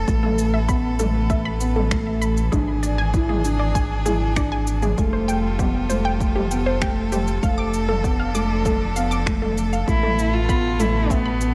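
A straight 4/4 pulse at 98 BPM drives this intimate, cinematic slice of piano and strings electronica, cut from a longer piece, with an overdriven, deep electronic kick re-recorded in a large room and a tape-warm organic electronic kit of finger snaps, shaker and toms re-recorded in a small room, both entering at 0.1 s. Underneath, a round analog bass blending sawtooth and sine sits up front with a fast attack, while a string quartet, one player per line, holds sustained chords with vibrato, portamento and a soft, expressive bowed attack, both pumping under sidechain compression. A lush, detuned unison pluck with a noise layer spins punchy, decaying arpeggios high above, also pumping and trailed by tape echo. A felt-muted upright piano plays a boxy, mellow riff with audible action noise and its own tape echo. The harmony moves through Asus2, E7/G#, Fadd9 and Dm/F before returning to Asus2 at 9.9 s, where a nasal, woody solo cello steps up front with a short melody. 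Light reverb ties the parts together.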